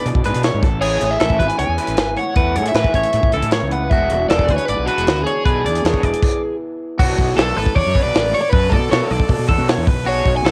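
A lo-fi home cassette recording with small room ambience carries this bright, wistful math rock and midwest emo piece at 156 BPM in straight 4/4, where a crunchy overdriven guitar leads the melody over bright, twangy twelve-string arpeggios, a slightly broken-up old-amp guitar in the background that drops out at 7.8 seconds, a very quiet double-tracked riff from a cranked stack guitar, round, punchy fuzz bass and an up-front fusion kit with a high-tuned snare, all pausing together in a stop from 6.2 seconds before moving from ninth and thirteenth colours into a Bm9 passage at 7.0 seconds.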